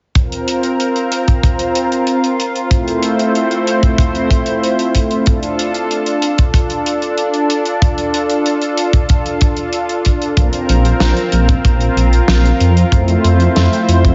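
A lush, detuned sawtooth pad with chorus and sidechain pumping sustains Bbsus2, Fmaj7 and Dm chords in this cinematic, nocturnal synthwave excerpt at 94 BPM, backed by a punchy, up-front kick and a studio kit with hi-hat and fat snare, and a thick, detuned saw bass, also chorused and pumping, joins at 10.4 s, the whole mix set in a moderate concert hall reverb with a top end capped at 7.6 kHz.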